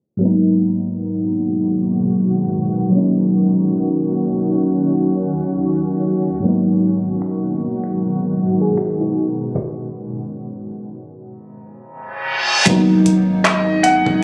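Moody and sensual, this contemporary R&B passage, cut from a longer piece, opens on a lush, chorused FM electric piano with a soft pad layer, soon joined by a cloudy, evolving granular pad bathed in its own reverb while a filter sweep runs. A smooth R&B kit with a knocking kick, woody snare, metallic hats, finger snaps and handclaps arrives at 7.2 seconds, and the music breaks off for a stop. A reverse cymbal then leads into an impact at 12.7 seconds, where a deep 808-style bass appears, and an intimate grand piano melody with audible action noise follows at 13.4 seconds. Light reverb and a muffled, low-passed quality give the sense of a phone capturing the music in a studio room.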